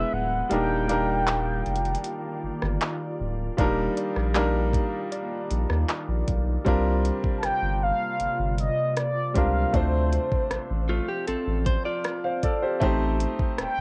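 A hazy cassette-tape sheen and light reverb give this moody, late-night contemporary R&B excerpt the feel of a home recording, cut from a longer piece. A mellow, horn-like synth lead carries the melody with a round, sawtooth tone, soft attack, vibrato, portamento and chorus, while a concert grand piano with vintage character and deep lows plays accompaniment up front. A saturated, thick triangle sub bass sits close alongside an electronic, produced drum kit of handclaps, metallic hi-hat, rim click and a knocking kick that joins at 3.6 seconds, the kit roughened by 12-bit sampler grit and a small-room re-recording. Behind them, a glassy, ethereal FM pad holds slow-blooming sustained chords in an ensemble chorus, and a dark, detuned, wave-folded pluck adds a faint analog-delayed texture from 4.0 seconds. At 10.9 seconds a clean, direct-recorded electric guitar steps forward with picked, compressed arpeggios washed in spring reverb, over a harmony that drifts from Ebmaj7 through C9sus4 and Dm7 toward Am7b5.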